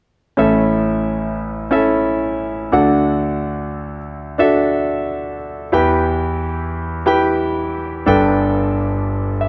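Pop in A mixolydian at 90 BPM, this uplifting excerpt features a bright concert grand piano as accompaniment from 0.4 to 9.5 s, sounding brilliant and polished up front, with deep bass and short sustain across a range from G1 to G5. The chords move from A through D and Em to Gadd9, and the piano adds a fill at 9.1 s, all set in a moderate large studio reverb. The tuning sits slightly below standard pitch, with A4 at 435 Hz.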